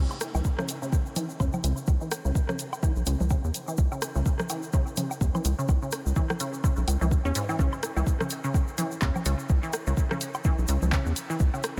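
A swung 16th-note groove in 4/4 drives this hypnotic, sparse minimal techno excerpt: a soft, up-front electronic kick and a tape-warm analog drum machine with handclaps and hi-hat anchor it, while overdriven, tape-echoed electronic woodblock, rim click and congas and a grainy, close acoustic tube shaker add texture beneath a rubbery, hollow square bass with sidechain pumping and a juicy, squelchy, resonant blip pluck riff with chorus and tape echo, all in a light digital ambience.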